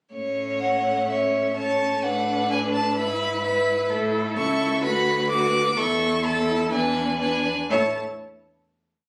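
The piece opens at 0.1 s with the second violin, viola and cello sounding together: the second violin and viola play chords in the rhythm of the tune and sustained chords, and the cello carries a sustained bass with passing notes. At 0.6 s the first violin enters up front and close with a smooth, even, vibrato-rich melody. This is a quick, lively and cheerful classical-period movement for string quartet in A major at 127 BPM in a straight 4/4, tuned to A4 = 437 Hz. The viola plays with a soft attack, portamento and expressive bowing, while the second violin and cello sit more distant, both full-toned and even. The harmony passes through A, Bm7/A, E/G#, Bm/D, A/E and E7 before the whole short piece settles on a final A5 chord at 7.7 s. The sound is a phone recording made in the room, finished with a light studio reverb.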